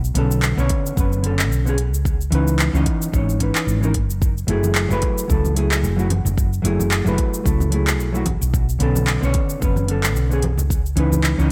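A round, punchy fretless bass sits up front in this wistful sunset chillout cut at 111 BPM in F# minor, joined by a clean, dark hollow-body jazz guitar with digital delay, smooth deep house hats, handclaps and shaker, a deep layered electronic kick from 0.7 seconds, and ringing congas and bongos that enter in the background at 4.6 seconds, all over a lightly swung groove moving through Bm9, C#m9 and F#m9 in a dry mix.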